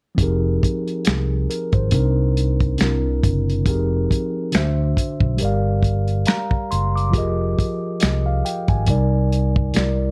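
Soulful and smooth, this slow neo-soul R&B groove at 69 BPM swings gently in F dorian as a mellow, clean tine electric piano moves through chords like Fm11, Cm9 and D7, adding a fill at 5.8 seconds, over a round, punchy fingered electric bass and a muffled, lo-fi soul drum kit of finger snaps, hi-hat, tight kick and snare, all sitting up front in a dark, lightly reverberant production.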